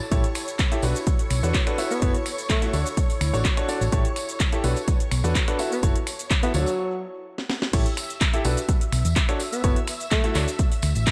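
Joyful and feel-good, this piano house piece at 126 BPM in A major, cut from a longer track, sets a clear, vintage grand piano riff with tape echo and sidechain pumping over a punchy, up-front electronic kick, a round, dark hollow-body electric bass, a house kit of cracking snare, metallic hats, handclaps, finger snaps, shaker and crash, a background tambourine, shimmering chorused string-machine violins and an airy pad that drops out at 6.8 s, while an intimate tenor saxophone, breathy with vibrato and scooped notes, appears briefly before returning at 5.7 s, and after a short break and drum fill the drop arrives at 7.7 s in an echo-heavy mix.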